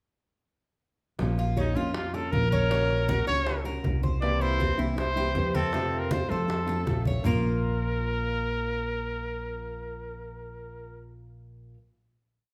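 A straight four-beat groove drives this short, nostalgic Cuban son and guajira piece, with the upright bass playing a tumbao that anticipates each chord change, pizzicato and woody, up front in the mix. Low-tuned congas with a thick skin sound add slaps and open strokes in the background, while tight, high-tuned bongos keep steady eighths with a hand bell, struck with hard hands. A bright nylon-string guitar strums with muted slaps, and the metallic, double-strung tres picks an arpeggiated guajeo with some octave-doubled strings. Over this, a solo trumpet carries a motif-based melody of call phrases, clear with vibrato and a smooth top, in a pop style. Guitar, bass and percussion enter together at 1.2 s, the tres follows at 1.4 s and the trumpet at 1.6 s, all playing live in one large, reverberant studio room. A drum fill at 6.7 s leads into a sustained final chord, and the percussion stops at 7.3 s while the other parts ring out.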